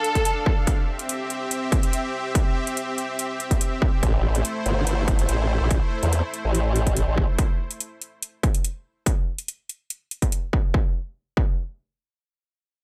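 A detuned, formant-filtered wobble bass with chorus and overdrive sits up front from 4.0 to 7.3 s in this menacing, heavy, half-time wobble dubstep cut at 143 BPM, driven by a distorted, layered electronic kick drum and metallic electronic hi-hats in small room ambience, with a lush supersaw pad holding sustained chords through Dm, C and Am under sidechain pumping, a brief, rich bowed violin section melody with vibrato and digital delay at the opening, and a barely audible downlifter, all in a dry mix.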